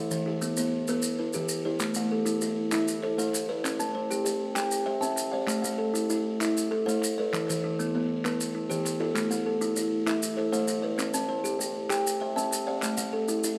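Two kalimbas open the recording together, setting up a rippling mbira-style interlocking cycle in southern African traditional style, cut from a longer piece. The plainer kalimba sits up front with a bright, ringing thumbnail pluck on a woody solid board, playing arpeggios from E3 to A5. Beneath it, the buzzing kalimba plays softer arpeggios from E3 to E5 with a mellow, airy, buzzing fingertip tone. Maracas join at 0.1 s with a grainy, small-room texture low in the mix, and a crisp, close and dry group handclap, the quietest part, comes in at 1.8 s and stops at 13.0 s. The tempo is 131 BPM in dotted quarters over a straight 12/8, in A equiheptatonic tuning with A4 at 439 Hz, cycling through Em, Am and C. Close, detailed microphones and a moderate recital hall reverb give the playing a warm, gently spacious feel.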